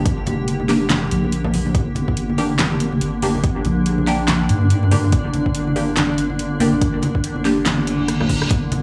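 Deep dubstep with a meditative, dark mood, this short excerpt moves in a half-time 4/4 feel with a swung sixteenth groove. A cloudy, evolving granular pad holds sustained chords with slow attack and its own reverb, while a deep wobble bass built from triangle and sine tones sits underneath, compressed and thickened with chorus. A punchy, overdriven electronic kick anchors the drums alongside a layered deep house kit of handclaps, rim click, a fat snare and metallic hats, with low-tuned, ringing congas played with soft hands tucked into the background under dub echo. From 0.7 seconds a muted, detuned sawtooth and pulse-wave chord stab plucks through a filter, colored by phaser, lush chorus, cassette tape character and dub echo. Near the close a reverse cymbal rises at 7.8 seconds and a drum fill lands at 8.1 seconds. The mix carries light digital ambience over a dry, gritty hardware sound with transformer saturation and a small room feel.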